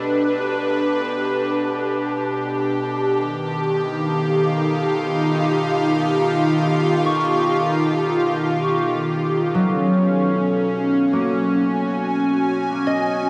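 In free time, this ambient fragment drifts with a luminous, peaceful calm, cut from a longer piece and tuned slightly high, with A4 at 441 Hz. An airy, breathy pad sits up front with chorus, holding sustained chords from start to finish as the harmony moves from G to D#add9 at 3.2 seconds and to F#sus2 at 9.5 seconds. Beneath it, an overtone-sweeping drone with moving overtones, chorus, phaser and its own reverb hums quietly throughout, fading in over the whole span. A mellow, ringing concert harp plays fingerpicked arpeggios with a diffuse ambient delay, sounding briefly at the opening and returning at 7.1 seconds, also fading in gradually. The production is dark and warm, set in a wet concert hall reverb that lets the tones hang in the air.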